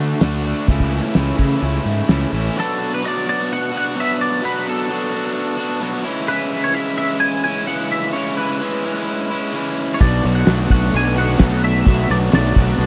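A crunchy, overdriven electric guitar sits up front and drives this jangly, carefree indie rock clip with a picked riff from start to finish, in a straight 4/4 feel. In the opening moments a compressed fuzz guitar plays a riff alongside it with a touch of chorus and tape echo, joined by a growly overdriven fingered bass and a cloth-damped, thuddy acoustic kit with a fat snare, tight kick and dark cymbals. At 2.6 seconds that fuller band drops away and a clean, twangy electric guitar takes up the melody, its chorus-tinged tone high above the riff over Bm7 and C#m chords. The fuzz guitar, bass and drums return together at 10.0 seconds, and a faint, crisp group handclap adds a vintage touch near the end. The sound is a dry, close 1970s-style studio recording in a small room, and the clip is cut from a longer piece.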